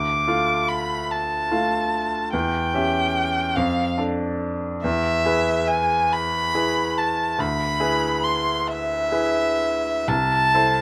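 A single bowed violin leads this short excerpt, its rich, focused tone shaded with vibrato as it sings a yearning melody high in its range, from E5 to D6, sitting up front yet carrying a slightly distant quality. Beneath it, a grand piano accompanies with a bright, polished sound and long sustain, reaching down to C2 and up to F5, and its action noise is audible in the intimate, close miking. This is a romantic classical duo in 6/8, moving slowly at around 41-49 BPM in dotted quarters, with a flexible, rubato feel and an elegiac mood. The harmony begins on D minor and passes through a diminished chord and an E major arrival at 4.8 seconds before settling on A minor over C at 10.1 seconds. Light reverb surrounds the detailed recording, and the passage is cut from a longer piece.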